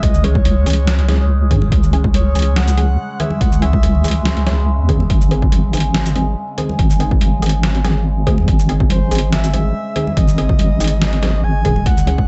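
A breathy, flute-like synth lead carries this heavy, cavernous deep dubstep excerpt at 142 BPM in a half-time 4/4 feel with a light swing on the sixteenths. The lead floats over a resonant drone of moving overtones and a deep, up-front wobble bass that is compressed and detuned. A punchy, overdriven electronic kick and a gritty, pitched-down sampler-style kit of hi-hat, shaker and snare drive the groove, with hard-handed congas sitting in the background. Muted, full-bodied dub chord stabs with phaser and dub echo join almost at once. The harmony moves from C#m to G# at 5.1 seconds, and the lead, treated with chorus, tremolo and dub echo, drops out before returning at 8.9 seconds. The mix is dark and softly reverberant, with the bass and kick dominating.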